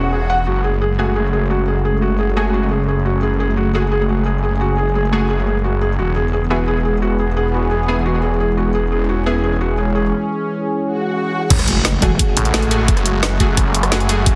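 Futuristic and aggressive, this dark technical drum and bass excerpt at 174 BPM in F# minor opens with an airy, resonant, sidechain-pumped pad, a soft felt-muted upright piano playing low-passed, delayed arpeggios until 10.0 s, and a snarling, growling distorted saw bass, with bold, punchy orchestra-hit-like synth stabs entering above it at 1.0 s; then a swell leads into the drop at 11.5 s, where an impact hits alongside a knocking overdriven electronic kick, a drum kit with woody snare and bright hats, and a brief pulsing pluck wobble bass, set in a lush hall reverb with a dense, heavily limited master.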